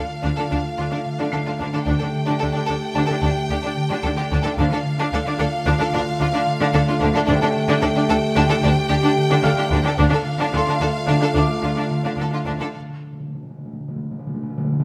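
Moving in a straight 5/4 at 110 BPM, this ominous, tense cinematic excerpt in D minor sets a rich, bowed violin section on a high melody over a clear, focused second violin line, lush violas, dark French horn chords, a background cello section and smooth double basses, a bright, ringing fingerpicked harp riff, and a vintage grand piano texture that drops out between 4.6 and 9.4 seconds, while round, soft-mallet timpani enter at 4.6 seconds and return for a closing fill from 12.7 seconds as the harp plays on, all set in a moderate scoring-stage reverb.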